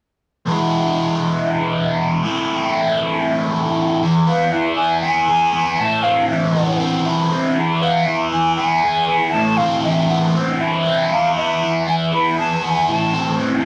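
An overdriven, double-tracked electric guitar sits up front in this dark, hypnotic rock excerpt, playing a picked riff in 7/8 from 0.5 seconds, its tone given a phaser sheen. The pulse runs at 237 BPM counted in eighths, with a straight feel, and the harmony alternates between E and A minor, colored at times by an added ninth. At 4.3 seconds a close-miked concert flute enters with a pure, hollow melody in its upper register, shaped by tongued notes and vibrato. The flute sits just beneath the guitar in level, and the guitar carries on to the close at 13.7 seconds. A wet studio reverb surrounds the rough rehearsal-room sound, and the passage is cut from a longer piece.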